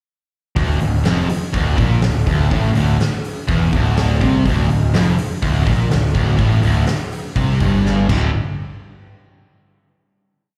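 Driving and menacing, this short hard rock piece in D minor runs at 123 BPM in a straight 4/4, heard as a live gig through a club's PA with a small-room ambience. From 0.6 seconds, two distorted electric guitars play a single-note riff in a low register: one is bright and sits in the background, and the other is sludgy and overdriven, both carrying a slapback echo. Up front, a growly, fuzz-laden picked electric bass pushes steady eighth notes and doubles the guitar riff. A huge arena drum kit with a punchy kick, medium-tuned snare, hi-hat and bright crash cymbals lays down a big rock groove in a natural, roomy sound. A drum fill starting at 7.9 seconds leads into a final hit at 8.3 seconds, which rings out to close the piece.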